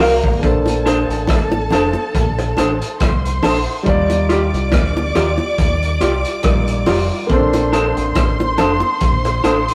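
This slow, romantic lovers rock excerpt in Bb major at 70 BPM opens with a crunchy, gritty breakbeat kit of punchy kick, hi-hat and rim click, a deep, round dub bass, a warm grand piano, slightly broken-up lo-fi guitar stabs with spring reverb and a lush, expressive violin section, with low-tuned, hard-hand bongos joining at 0.7 seconds, all moving sweetly between Bbmaj9 and Ebmaj9 in a rough rehearsal-room sound.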